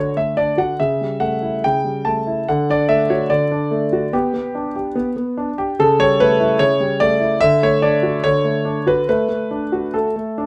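Graceful and elegant, this short passage from a classical-period piano sonatina moves at an unhurried 72 BPM in a straight 4/4, set in D major. A solo concert grand carries everything from 0.0 to 10.5 seconds, ranging from C#3 up to A5. The instrument sounds warm, intimate and natural, placed up front with deep bass and audible action noise that brings the listener close to the keys. Its harmony circles the home key, passing through A7/C#, G/B and back to D before settling on D/A near the close. A light reverb gives the room a gentle glow, and the passage is cut from a longer piece.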